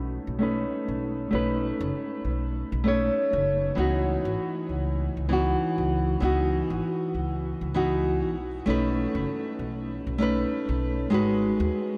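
Smooth and warm, this sunset chillout excerpt moves at 98 BPM in 4/4 with a lightly swung sixteenth feel, tuned to A4 = 444 Hz and drifting through B9, C#m11 and G#m7 chords. A fingerpicked, classical-style nylon-string guitar sits up front, roughened by vintage 12-bit sampler grit and softened by a low-pass filter and tape echo. A woody, thumpy pizzicato upright bass runs beneath until 11.7 seconds, and the whole dreamy mix is soaked in a huge ambient reverb with a 7.2-second tail.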